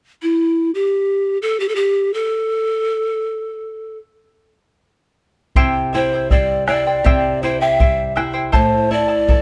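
Close, detailed microphones and light reverb give this short Andean folk recording an intimate clarity. In free time, large cane pan pipes enter at 0.2 seconds and carry the melody alone at first, breathy, mellow and hollow, with vibrato and a crisp chiff on each attack, placed up front. At 5.6 seconds the ensemble joins. A fingerpicked charango, also up front, shimmers on its double strings, some doubled at the octave, while a fingerpicked flamenco guitar adds lower acoustic support and a deep, dark bombo sounds from a small room. The harmony settles on C and turns to A minor near the end, giving the piece a festive yet wistful mood.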